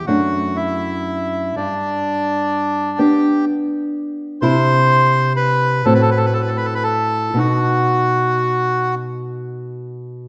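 A bandoneon and a nylon-string guitar begin together, opening an elegiac, melancholic romantic duo in a slow, rubato 6/8 that drifts between 36 and 43 beats per minute on the dotted quarter, tuned to A4 = 439 Hz. The bandoneon carries the melody in a reedy, mid-forward voice that sits up front, moving between D4 and C5. Beneath it, the guitar supplies the accompaniment in a small, thumb-plucked acoustic tone, with finger squeak audible and its range running from F#2 to F#4. The harmony passes from D/F# through G and C to F#dim/A, arriving on B, and the bandoneon falls silent at 8.9 seconds so the guitar rings on by itself until 10.3 seconds. A wet concert hall reverb with a two-second tail wraps this short fragment of a longer piece in a spacious, mournful glow.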